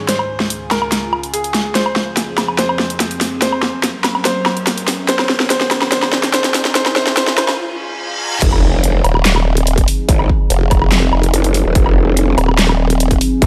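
A half-time 4/4 groove at 144 BPM drives this heavy, aggressive wobble dubstep cut in F phrygian, taken from a longer piece. The opening build-up sets an evolving wavetable pad of morphing, slow-attack chords, coloured by chorus, phaser and sidechain pumping, beneath a brilliant grand piano melody with short sustain and tape echo, while the layered dubstep kit runs a fill of huge snare, bright hats, handclaps, woodblock and crash. A very quiet riser, reverse cymbal and sub drop add tension, and a brief break at 7.6 seconds clears space before the drop. At 8.4 seconds a punchy, overdriven electronic kick and a growling, saturated bass with chorus hit up front, joined at 9.0 seconds by a sawtooth formant-sweep wobble bass. The mix stays lightly reverberant with a digital ambience.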